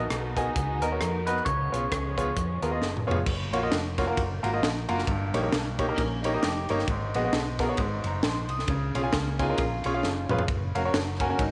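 A brilliant, up-front concert grand piano drives this jubilant, uplifting uptempo gospel excerpt in F# major at 133 BPM with a swung 4/4 feel, joined by a round, dark hollow-body electric bass, a gritty fusion drum kit with a punchy kick, a high-tuned snare and brief fills, a twangy picked electric guitar melody in the opening seconds, lush bowed strings in the background until 3.3 s, and a warm clean guitar second line from 6.0 s, heard within a moderate echo-chamber reverb.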